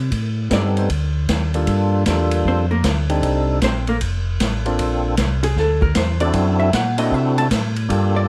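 A swung 4/4 groove sets a bluesy, smoky soul jazz organ trio feel in this short excerpt cut from a longer piece. A mellow, round tonewheel organ carries the bass line from the very start, lightly overdriven and up front, colored by chorus vibrato and a slow rotary speaker. The big-band-style drum kit swings along on hi-hat, ride, snare and punchy kick, sounding distant and roomy with a rolled-off top. At 0.5 seconds a second tonewheel organ takes the melody with a fat, percussive edge, also lightly overdriven with chorus vibrato and slow rotary, while a clean, compressed archtop guitar with a dark hollow-body tone plays a jazz solo over the minor-key changes. Light reverb gives the whole trio a cozy room sound.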